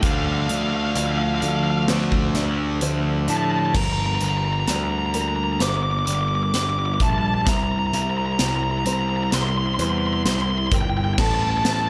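Brooding and cinematic, this post-rock excerpt moves at a slow 65 BPM in a straight 4/4, set in G dorian and cut from a longer piece. A dark, distorted lead guitar carries the bluesy melody up front, coloured by tape echo, while a growly fuzz bass sits just as forward and a punchy acoustic drum kit with bright cymbals and a high-tuned snare drives underneath. A bright, overdriven rhythm guitar plays a picked riff only until 3.7 seconds, just before a drum fill and build-up take over from 3.8 seconds to the end. Beneath the heavier parts, a compressed, very quiet clean guitar and a boxy, felt-muted upright piano with tape echo trace arpeggios, and a glassy, warbling FM pad holds ethereal sustained chords. The harmony moves from Dm to Gm, then C, landing on A7(no3) near the close, all within light reverb and a small room ambience.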